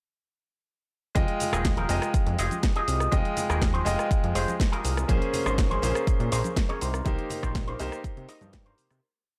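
A bright grand piano opens at 1.1 seconds with held chords and syncopated pushes, sidechain-pumping through an analog delay, before the whole groove drops in at 1.2 seconds: a punchy four-on-the-floor kick, a tape-warm house kit with cracking snare, shaker, hats and rim, faint ringing bongos, congas and maracas, and a fat, detuned sawtooth bass playing a funky syncopated line with filter sweeps. At 1.5 seconds a clean, twangy electric guitar through an envelope filter joins with a compressed funk chord rhythm in close voicing, touched with subtle chorus and delay. This groovy, sensual nu-disco piece in F minor at 122 BPM moves from Fm9 to Bbm9 and Cm7, its dry, gritty sound fading out from 6.4 seconds.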